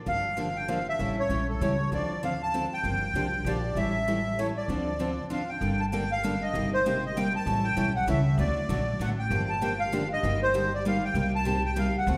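A reedy, sweet accordion with light tremolo tuning carries the melody up front in this virtuosic, bittersweet jazz manouche excerpt, a swung piece in 3/4. A warm, picked steel-string acoustic guitar supplies the accompaniment, and a woody, thumpy pizzicato upright bass on gut strings anchors the low end. The minor-key harmony moves into a new section at 5.6 s, and the whole is bathed in the wet reverb of a recital hall.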